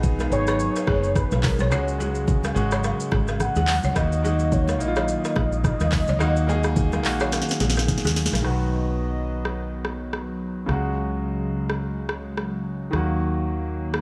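A velvety synth lead carries the melody from 0.3 to 7.9 seconds of this sultry, mellow afrobeats excerpt in Eb minor at 107 BPM, its chorus and tape echo set against an up-front afro-pop kit with deep kick, sharp snare, crisp hats, handclaps, rim click and shaker, plus a round, punchy fingered electric bass. A clear concert grand piano with audible action noise and long sustain plays accompaniment while a hollow, flute-like pad holds soft sustained chords in the background, moving through B, Dbsus4 and Ebm. A woody, buzzing balafon riff with tape echo and very quiet congas drop out at 8.4 seconds after a drum fill, leaving the groove to carry on.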